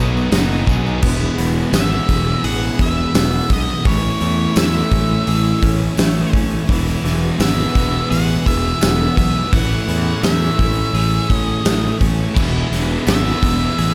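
Shoegaze-leaning dream pop rock at 85 BPM in E major, hazy and dreamy, moving from a B6 chord into a slow E, Amaj7 and Emaj7 cycle while a dark octave-fuzz lead guitar carries the melody through slapback echo. Beneath it sit a growly overdriven fingered bass and a huge arena drum kit, the kit up front with a fat snare and punchy kick, while a tambourine jingles quietly. Layered guitars fill out the background: a thick fuzz riff with lush chorus, a hollow-toned overdriven semi-hollow riff with reverse reverb, a twangy, compressed clean guitar picking chorused arpeggios, and a bright double-tracked distorted guitar heard only until 1.0 seconds and again from 12.3 seconds, all over very soft, mellow vintage string-machine cello chords.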